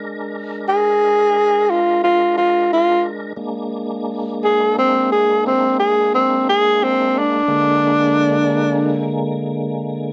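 A breathy, whispered tenor saxophone sits up front in moderate studio reverb, carrying an intimate, soulful jazz-style melody with vibrato and soft attacks from 0.7 to 9.2 seconds over a lightly overdriven tonewheel organ holding full sustained chords through a slow rotary speaker and chorus vibrato, in a laid-back 12/8 blues at 58 BPM that stays on a Bb7 chord throughout this short cut from a longer piece.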